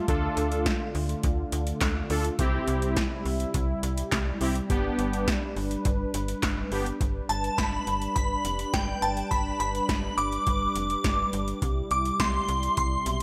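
Light reverb gives this cool, melancholic synth-pop excerpt a soft sense of space as it moves at 104 BPM over chords of Dm, C and G, with an overdriven electro analog drum machine up front laying down a deep kick, punchy snare, handclaps and metallic hi-hats beneath a snappy, slap-like FM bass and a smooth, detuned sawtooth pad with chorus. A bold, fat analog synth brass with a filter sweep carries the accompaniment until 6.9 s. At 7.3 s a shimmering, dreamy FM bell with an ensemble-chorus halo takes the high melody through to the end.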